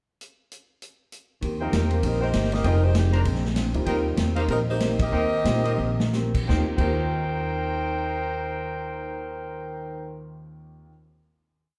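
A short, complete big band swing piece in Eb major opens with a vintage drum kit alone, playing a pickup bar from 0.2 seconds, its punchy kick, medium-tuned snare and rolled-off cymbals carrying a backbeat and ride pattern at a joyful, swinging tempo between 165 and 197 BPM. At 1.4 seconds the band arrives: a woody, up-front upright bass in a plucked two-feel and a clean, hollow-body archtop guitar strumming jazz chord shapes in the background. A smooth vintage grand piano touches in briefly at 1.6 seconds, then returns from 3.7 seconds comping with syncopated rootless voicings. A clear, vibrato-rich saxophone section carries the melody in four-part block harmony from 1.9 to 6.1 seconds, while a trumpet section with a smooth top punctuates with syncopated stabs in drop-2 voicings from 1.6 seconds. The harmony moves from Eb6 through Fm9 and Bb9 back to Eb6, and from 3.9 seconds the band slows down, with a full-band accent at 5.0 seconds and a short drum fill just before the held final chord that starts at 6.5 seconds. 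A large studio reverb places the ensemble further back in a roomy, live-sounding space.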